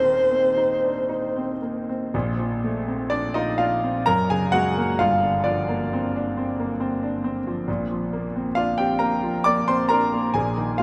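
A mellow alto saxophone sings a brief classical-style melody on C5 with vibrato, up front, for the first 1.6 seconds, after which a clear concert grand piano with deep bass carries on alone in this luminous, dreamy fragment of impressionist classical duo music in Bb major, unfolding in a rubato 3/4 at 56-69 BPM through chords such as Bbmaj9, Gbadd9, Gm7 and Bb69, bathed in a cathedral reverb that hangs for 6.6 seconds in a vast, echoing space.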